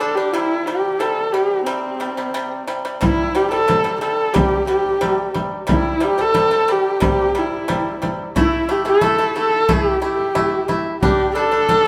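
A husky, bowed horsehead fiddle carries the melody up front with vibrato, portamento and tape echo over bright, fingerpicked pipa arpeggios, joined at 3.0 seconds by a deep, close frame drum, giving this proud, galloping Mongolian folk excerpt in C gong mode at 90 BPM the feel of a band playing live together in a large, reverberant studio.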